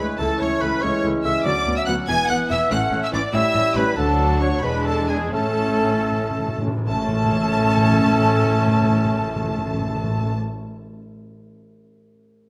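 A lilting 6/8 pulse at 74-96 BPM, counted in dotted quarters, carries this graceful, lively classical-period movement for symphony orchestra in A major, cut from a longer piece. A rich, focused violin section sings the melody up high with a smooth top and vibrato, while an airy silver flute, a second, very quiet violin section, a soft-edged clarinet, and a hushed oboe weave supporting lines beneath it. A mellow, close-miked bassoon and a distant, even viola section fill in the accompaniment, the French horns hold soft sustained chords, and a roomy trumpet section adds quiet stabs. The low end rests on an intense, clear double bass section and a smooth cello section, with the harmony moving through A, B minor, E and D before returning home. The music slows from 3.3 to 6.9 seconds, and round, dry timpani struck with soft mallets enter at 5.3 seconds with a fill, all set in a moderate recital hall reverb.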